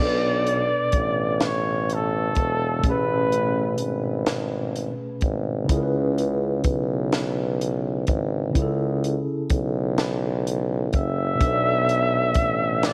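A slow, sultry six-eight R&B piece in B dorian opens with a warm, vintage-toned flugelhorn carrying a yearning jazz-style melody, its notes scooped and shaded with vibrato, over a mellow, clean tine electric piano and a clear tuba bass. A compact, dry acoustic cocktail drum kit joins at 0.5 seconds, with hi-hat, a high-tuned snare and a punchy kick set up front. The tempo sits at 42 BPM in dotted quarters with a straight feel. The flugelhorn drops out at 3.9 seconds. The drums keep time while the electric piano and the present, pop-style tuba, which has its own vibrato, carry the harmony through Bm7, Amaj9, C#m7 and F#m7. The horn returns at 10.9 seconds as the progression comes back around to Bm7, all within a light studio reverb in this short cut from a longer piece.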